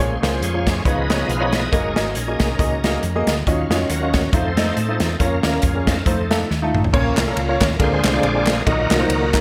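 A clear concert grand piano, a shouting tonewheel organ with slow rotary speaker and chorus vibrato that takes the solo throughout, and a round, dark hollow-body bass open this fervent, soulful uptempo gospel excerpt with a swung feel, joined at 0.2 seconds by an up-front, punchy country drum kit with gated reverb that plays a fill before the change at 6.9 seconds, while hollow, close handclaps sit in the background from 7.2 seconds, all bathed in a lush hall reverb and bright 1980s-style digital production.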